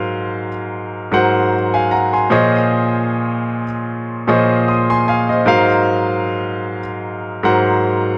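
A clear concert grand piano plays alone through this short R&B excerpt, its intimate, up-front tone carrying deep bass, long sustain and audible action noise as it moves across a range from Ab2 to Eb6. At 76 BPM with a gentle sixteenth-note swing, the harmony drifts from Ab13 to Bbm11 and back to Ab13, setting a late-night, longing mood. The piano sits in light reverb and small-room ambience, captured on a dry, gritty hardware recording.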